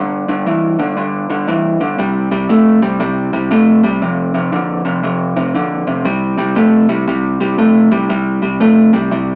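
An electric guitar opens this short blues clip on a G5 chord, its tone slightly broken-up and lo-fi, as if pushed through a small old amp. The tempo is an easy 118 BPM in 4/4 with a gentle swing on the eighth notes, giving the playing a laid-back, gritty mood in C major. The picked part stays low, between F2 and A3, and sits up front with a compressed edge. The harmony moves to C5 at 2.0 seconds, then to F5 at 4.0 seconds and back to C5. A moderate studio reverb adds space, and the live-room recording keeps the sound loose and immediate as this fragment of a longer piece comes to a stop.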